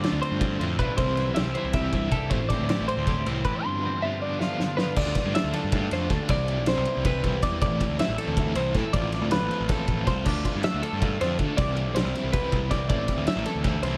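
Opening together at 0.0 s, a clean, compressed twelve-string electric guitar chording low, a bright, twangy twelve-string spinning high arpeggios in the background, a crunchy, double-tracked overdriven guitar riff with tremolo, a fuzzy picked bass and an up-front loose indie drum kit with dark cymbals, a fat snare and a tight kick drive this intricate, wistful math rock and midwest emo excerpt in 7/8 at 318 BPM in C major, where analog delay colours the guitars and drums, a drum fill at 4.4 s ushers in a new section as the lower twelve-string drops out at 5.0 s, and the echo-heavy mix, with light reverb and small room ambience, moves over chords such as Dm9, Cmaj7 and Am.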